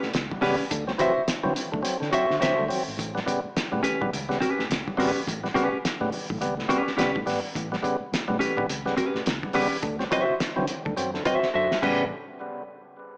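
A lightly reverberant, small-speaker sound frames this gritty, playful funk excerpt at 105 BPM in 4/4, with a 60% swing on the sixteenths and a home in A mixolydian. Up front, a clean, compressed, scooped electric guitar carries the accompaniment in a dark tone, while a full, percussive tonewheel organ plays stabs with key click and third-harmonic percussion, lightly overdriven and fed through tape echo. The cloth-damped drum kit sounds thuddy and muffled, with a fat snare, tight kick, dark cymbals and a saturated, rolled-off top, and a drum fill arrives from 11.5 to 12.1 seconds. Beneath them a vintage, foam-muted fingered bass sits round and in the background, and very quiet congas with bright, thin skins add soft-handed percussion from a live room. The harmony moves between A9 and D9, with the band settling back on A9 near 11.8 seconds before the chords stop at 12.1 seconds.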